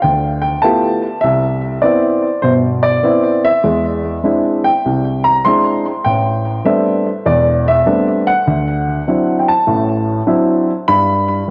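Warm and sophisticated, this 11.5-second fragment of solo jazz swings at 100 BPM in G major, with a dark, mellow baby grand piano sitting up front through a cassette tape effect and tape echo, moving from G13 through Cmaj7, E7alt, Am11 and D9 before settling on G, all bathed in moderate spring reverb and the homely character of a cassette home recording.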